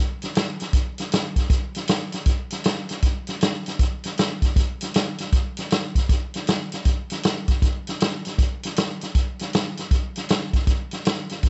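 A vintage acoustic drum kit carries this short blues excerpt on its own, coming in at 0.2 seconds and playing through to the close at 11.5 seconds. Hi-hat, a punchy kick and a medium-tuned snare make up the kit, heard up front in a natural studio room. The groove swings its eighth notes in 4/4, giving the whole passage a laid-back yet swaggering attitude. The drum tone is warm, with a rolled-off top. A light reverb adds a touch of space, and the recording keeps its highs dark and soft throughout.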